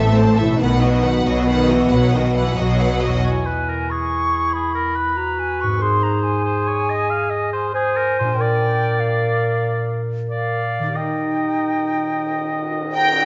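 This soaring, triumphant stretch of heroic adventure film score, cut from a longer piece, opens with the full string body and a mellow, distant French horn section holding sustained chords. The focused, close violin section carries the melody over a second violin line and rich, lush violas in the background, while cellos and a clear double bass section anchor the bass. A ringing concert harp plays arpeggios throughout, in a straight 12/8 at 92 beats per minute. At 3.2 seconds the strings fall away and three woodwinds take over the second lines: an airy, bright flute, a soft-attacked clarinet, and an up-front oboe with a vintage, classical character. The harmony moves from E through Abadd9 and Bb7 to Eb, and a cymbal swell rises in the background from 11.0 seconds as the violins return briefly near the close. A wet scoring-stage reverb gives the whole a roomy, rounded sheen with a softened top end.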